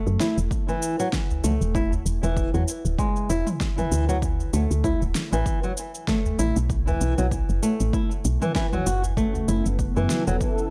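Organic downtempo with a mystical, warm air, this fragment moves at 97 BPM in 4/4 with a light swing on the sixteenths, as an up-front, boxy flamenco guitar plays thumb-plucked arpeggios with audible finger squeak and tape echo over a round, woody FM bass that pumps to the sidechain. A punchy, overdriven electronic kick and a deep house kit of cabasa, fat snare and toms sit in a small room ambience, while a small acoustic udu plays in the background from 1.3 s, and the harmony drifts from E through D5 and B5 to F#m. At 9.2 s a smooth, detuned sawtooth pad with chorus and a moving notch arrives, all within a dry, gritty recording.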